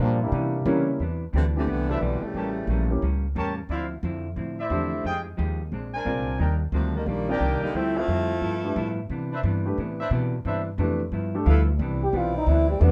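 Swinging and energetic, this up-tempo big-band jazz cut at 178 BPM in C major opens with a brief, clear trombone section line over dark, picked hollow-body guitar and a woody, thumpy upright bass, with a polished baby grand piano joining, a mellow, vibrato-rich saxophone section carrying the melody, distant, roomy trumpet stabs, and at 11.8 seconds a trombone solo sounding over warm sustained saxophone chords, all in a moderate club reverb.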